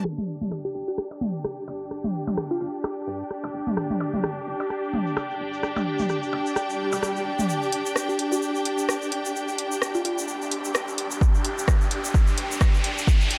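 Minimal techno at 129 BPM with a swung 16th feel, this cool, sparse excerpt from a longer piece sets a lush, bowed symphonic string section up front with sidechain pumping, over a tape-toned click kit of blips, rim clicks and toms, a rubbery, dark square bass sitting in the background, and a glassy, crystalline wavetable pluck with chorus and analog delay. A grainy egg shaker joins at 3.8 seconds, and at 7.7 seconds the click kit gives way to a punchy analog drum machine with filtered hi-hat and rim click as a swell and riser drive a build-up. A punchy electronic kick arrives at 11.2 seconds, all set in light digital ambience with a dry, gritty hardware sound.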